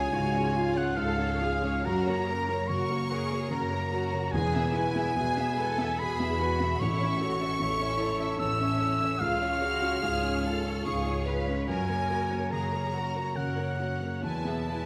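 From the first moment, a lush violin section sings the melody, joined by a second, higher violin line and a solo oboe with light vibrato. A felt-muted upright piano gives dark, intimate accompaniment beside a distant viola section with portamento and a ringing harp playing arpeggios, while smooth bowed double basses and an expressive cello section form the bass, and soft-mallet timpani sound very quietly from 4.3 s to 8.0 s. This hopeful, uplifting cinematic cue for orchestra moves in a flexible, rubato three-beat feel, bathed in the wet reverb of a scoring stage, and is cut from a longer piece.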